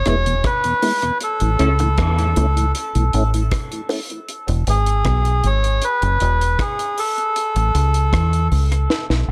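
A reedy, breathy melodica carries the melody up front with dub echo, over a round, punchy fingered electric bass in this spacious, laid-back dub reggae fragment. A dark, dry drum kit with a high-tuned snare and tight kick, also treated with dub echo, plays alongside a mellow tonewheel organ with slow rotary speaker and chorus vibrato. Soft-handed bongos play quietly from 0.8 to 4.1 s, a bright, twangy clean guitar flickers briefly at 1.6 s, and a drum fill arrives at 8.9 s in a small, lightly reverberant room.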